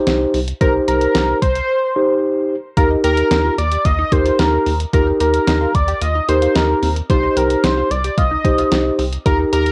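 A straight 4/4 pulse at 111 BPM comes from a 12-bit digital drum machine, whose thumpy kick, fat snare and hi-hat sit up front with a tape-warm, sampler-style character that sounds re-recorded in a small room. This upbeat yet wistful synth-pop excerpt, cut from a longer piece, moves from C minor to E-flat and back to C minor, with a break at 1.7 s. A mellow tine electric piano carries the accompaniment close up, as if heard through built-in speakers, while a rubbery square bass bounces beneath it with a hollow, dark tone. The bold, retro octave-doubled lead enters at 0.6 s, its detuned sawtooth sustained and coloured by chorus, vibrato and cassette tape. From 2.8 s a lush, punchy unison pluck adds arpeggios in the background, with a noise layer shaded by phaser and tape echo. The mix has a moderate studio reverb and the soft fidelity of a home cassette recording.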